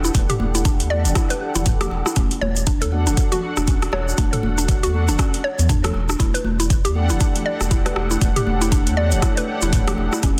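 A woody mallet-like synth pluck playing arpeggios, dark brassy synth stabs with chorus, phaser, cassette-tape color and dub echo, a round, nasal analog bass pumping up front, and a grainy, close tube shaker open this spiritual afro house excerpt at 119 BPM in E dorian with a swung 16th feel over Em11 and D/E chords, quickly joined by a deep, tape-warm electronic kick, a deep house kit with metallic hats, rim click and toms, and bright, high-tuned congas heard distantly in a large room, before a moody, wave-folded analog pad swells in the background at 6.6 s and a barely audible riser appears at 10.2 s, all in a dense, heavily limited modern mix.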